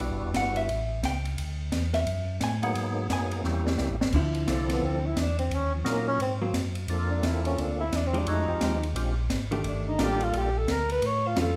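Bluesy and soulful, this swinging soul jazz organ trio opens with a dark, compressed hollow-body electric guitar solo over a fat, lightly overdriven organ with key click, percussive attack and slow rotary speaker. Beneath them sit a round, mellow organ bass line with chorus vibrato and an acoustic drum kit with a high-tuned snare and boomy kick, which plays a fill at 3.4 s. A breathy, whispered tenor saxophone enters at 4.7 s to carry the solo, its subtone and scooped notes sounding intimate yet roomy in a moderate recital-hall reverb.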